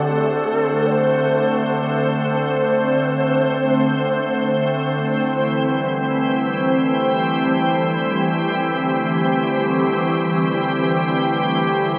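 Warm and weightless, this free-time ambient fragment, cut from a longer piece, opens with a breathy, mellow shakuhachi carrying a brief melody with vibrato and a diffuse ambient delay until 4.5 seconds, over a soft, organ-like pad holding sustained chords from D7 to C with ensemble chorus, bright and up front. A detuned drone with sweeping overtones fades in behind it, resonant and set in the background, and at 5.6 seconds a reversed, granular texture swells in on a single high G, dreamy and bright. The whole sits in a huge, wet reverb with a cassette-tape character.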